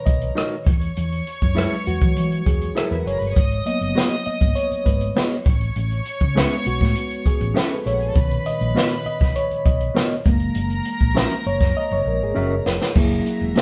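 Opening on a reedy electric piano solo with fast tremolo, set against floating, soft-attack bowed strings, this lush 1970s-style soul clip adds a dark, round hollow-body bass, a mellow clean guitar riff and a roomy cocktail drum kit with a punchy kick and a high-tuned snare, leading to a drum fill at 11.8 seconds before a grainy tube shaker slips in at 13.0 seconds, all in a light-reverb, live-room sound.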